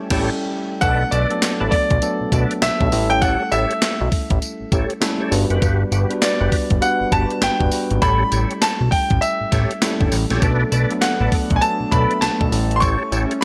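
A clear, up-front baby grand piano carries the melody over a bouncy, punchy new jack swing groove at 100 BPM in B minor, where a gated 80s drum machine with a thumpy kick, gated-reverb snare, handclaps, hi-hat and tambourine joins a fat sawtooth analog bass, a worn, slightly out-of-tune tine electric piano, percussive tonewheel organ stabs through slow rotary speaker and delay, and a very quiet, swirling phased pad that sounds only at the opening and returns at 10.4 seconds.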